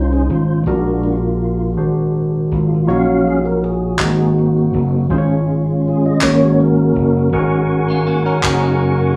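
A mellow tonewheel organ leads this slow gospel excerpt with a soft, flute-like solo over sustained chords, its key click audible and its fast rotary speaker giving the tone a shimmer up front in the mix. Beneath it, a barky tine electric piano plays bright, direct accompaniment, while a vintage slap bass sits punchy and amped at the bottom, moving through a rich progression that begins on Dbmaj9. The feel is uplifting and reverent, swaying in 6/8 at 54 BPM. At 4.0 seconds a group handclap joins with crisp, human, close-miked hits. As the organ solo gives way around 7.3 seconds, a clean, compressed electric guitar slips in quietly at 7.9 seconds with a picked second line bathed in spring reverb, all heard as a band playing live together in one room with a moderate studio reverb.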